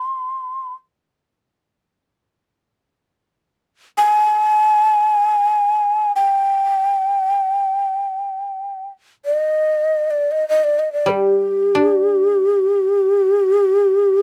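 A breathy, hollow shakuhachi sits up front and carries the melody in free time through this calm, austere fragment of Japanese traditional chamber music in G miyako bushi, its end-blown bamboo tone mellow, with vibrato and tongued, chiffy attacks. The pace slows from 8.4 seconds, and at 11.1 seconds a quieter koto enters in a low register, its dry, woody fingerpicked notes offering accompaniment. A light reverb surrounds the music until it breaks off at 14.2 seconds.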